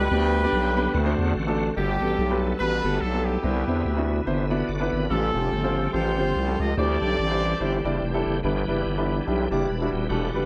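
A growling FM bass sits up front in this soulful, hopeful gospel excerpt, its thick, sine-based tone hitting with a fast attack and sustaining beneath the band in G major at 144 BPM in 4/4, with a swung eighth-note feel. A horn section carries the melody in a jazz style, its ensemble sound smooth on top with light vibrato, also placed up front until it stops at 8.0 seconds. A bright tonewheel organ holds sustained chords through a fast rotary speaker, lightly overdriven and shouting with chorus vibrato, while a concert grand piano accompanies with a warm tone and deep bass, entering at 0.1 seconds. After a short opening passage, the harmony moves through rich chords such as Gmaj9, Cmaj9, A7alt and D9sus4 before settling on G6. A moderate large studio reverb gives the group a sense of space, and the recording is cut from a longer piece.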